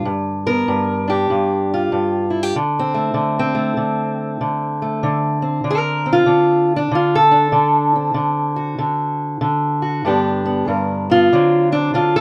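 A fingerpicked steel-string acoustic guitar carries this short, rollicking yet laid-back piece of acoustic country blues, playing solo from 0.0 to 12.2 seconds. Its tone is dark and boxy with a parlour character, and it sits up front in a light reverb. The tempo is 96 BPM in 4/4, with a swung eighth-note feel that keeps the groove loose and easy. The harmony moves from G7 to D7 at 2.6 seconds, settles on G at 10.1 seconds, and turns back to D7 near the close, as this fragment is cut from a longer piece. The guitar ranges from G2 up to Bb4 across the single passage.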